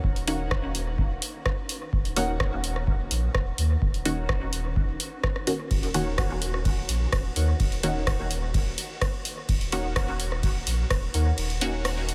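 A filtered dub chord stab punctuates this cavernous, nocturnal dub techno excerpt: a muted, resonant pluck of detuned sawtooth and pulse tones run through a phaser and dub echo, with a filter sweep across the whole passage. Beneath it, a clean pure sine sub bass holds a deep, smooth foundation, saturated by tube warmth and pumping against the kick. That analog, tape-toned electronic kick drives a straight pulse in a large room until it drops out near the end. A layered deep house kit adds dark hi-hats, ride cymbal and rim clicks trailed by dub echo, while warbling lo-fi synth keys float in quietly with a nostalgic, mellow, chorused riff that also pumps and echoes. The dreamy mix sits on a single Ebm7 chord, drenched in a huge ambient reverb that stretches each hit into the dark.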